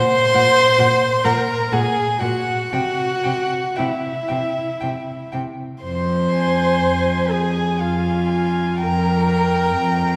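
A wet concert-hall reverb with a 1.8-second decay surrounds this brief fragment of a slow, romantic string-quartet movement in F minor, solemn and elegiac in mood, moving in a rubato 3/4 at roughly 56-68 BPM. The viola and a second violin begin at 0.0 seconds, both bowed sul tasto with light vibrato, soft attacks and an airy, intimate closeness, the viola sitting up front as the accompaniment while the violin carries a high second line. At 0.3 seconds the melody arrives on a dark, woody first violin with vibrato and a smooth top, confined to a narrow span between Gb5 and Ab5, while the cello enters beneath it with a rich, pure and floating bass, also up front and played sul tasto. The harmony passes from Gb over Bb to C, then to F minor, and ends on a Bb fifth over F, before the fragment breaks off at 10.2 seconds, cut from a longer piece.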